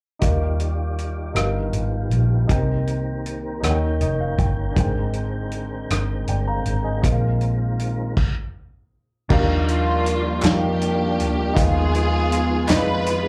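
Slow, jubilant gospel in a straight 6/8, heard live through a club PA, where a worn baby grand piano with short sustain lays down the accompaniment and adds a fill at 3.6 seconds, a lightly overdriven tonewheel organ with key click and fast rotary speaker holds sustained chords, a dark, foam-muted electric bass sits round and punchy up front, and a tight, mid-forward soul drum kit drives the groove until a full stop at 8.2 seconds, after which a lush, bowed string section enters with the melody at 9.7 seconds and hollow group handclaps join in the background.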